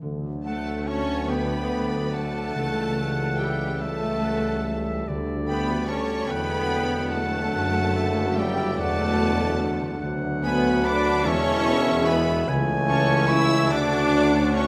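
A moderate stage reverb surrounds this tender, lyrical excerpt from a slow romantic orchestral movement in rubato six-eight, where lush violins carry the high melody from 0.5 s above a very quiet second violin line, a pure-toned flute and a bright, close-miked clarinet (entering at 1.3 s) add second lines, an intense viola section accompanies in the background, smooth cellos, focused double basses and a clear tuba hold the bass, French horns and trombones sustain warm chords behind, and a mellow, ringing harp arpeggiates very quietly throughout.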